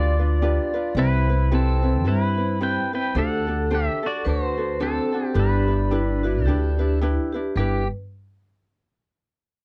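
Heard together from the start, a clean, fingerpicked electric pedal steel guitar sings the melody up front with slide and volume swells over a ringing, mellow vibraphone second line in the background, a light fingerpicked ukulele and a woody pizzicato upright bass, giving this dreamy, sunny Hawaiian piece in G major a swung 109 BPM lilt through G7, Cmaj7, D7sus4, D7 and G6 in a dry, close 1970s-style studio sound.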